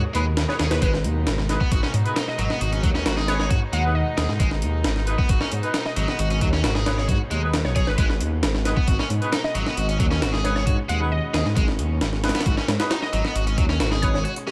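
A straight 4/4 breakbeat groove at 134 BPM drives this energetic, raw clip in G# minor, cut from a longer piece and sitting on a single G# minor chord throughout. The sampler-style drum kit is up front, compressed, pitched up and gritty, with a thumpy kick, a high-tuned snare, hi-hats and a tape-warm grit, all thrown into dub echo. A deep, rumbling detuned saw bass shares the foreground, its saturated unison voices beating against each other under the beat. A tight, bright distorted electric guitar riff and clear, distant horn stabs with light vibrato both feed into the echo, while a very quiet, earthy chamber string section holds bowed chords far behind them. From 0.5 seconds a glassy, crystalline wavetable pluck carries the melody through chorus and an AM-radio filter, and the lightly reverberant, echo-heavy mix reaches a break at 14.3 seconds.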